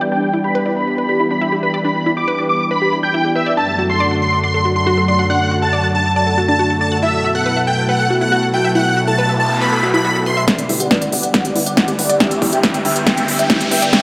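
Uplifting trance at 139 BPM in E minor, driving and soaring, where a huge, euphoric supersaw lead with chorus, delay and sidechain pumping carries the melody over silky analog string-pad chords and a lush, detuned unison pluck arpeggio with tape echo, a noise sweep arriving at 9.0 seconds before a build-up from 10.5 seconds brings in a punchy, overdriven big-room kit with crisp hats, a tape-warm electronic kick, a very quiet tight sequencer bass, a riser and filter sweeps on the lead and arpeggio, all steeped in a dreamy hall reverb through the Em7, D/F#, B7sus4 progression.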